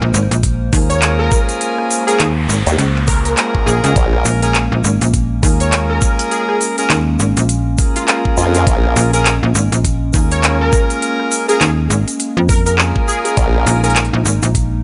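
Funky and swaggering, this glitch hop groove swings on a snappy, metallic FM slap bass and a knocking, up-front electronic kick, with a pop kit of crisp hi-hats, handclaps and rim clicks plus a grainy egg shaker in the background. A warbling, lo-fi pad holds dark, nostalgic chords with chorus and sidechain pumping, while a bright, jazz-style horn section plays stabs with light vibrato and digital delay, and a punchy, detuned unison pluck carries the catchy melody. A background noise sweep appears early, and a chorused, overdriven formant-sweep wobble bass bursts in up front at 2.7, 8.4 and 13.4 s.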